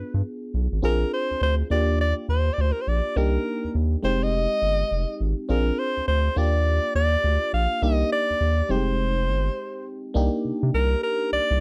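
Bouncy and confident, this short excerpt of swung new jack swing R&B in C minor at 103 BPM features a bright alto saxophone singing a vibrato-laced pop melody up front with slapback echo, while a glassy, bell-like FM electric piano shimmers through chorus and phaser over a round, deep analog bass, all in a dry, close 1970s-style studio sound, moving from Bb7 through Ebmaj7, Cm7 and Fm7 before a break at 9.6 seconds.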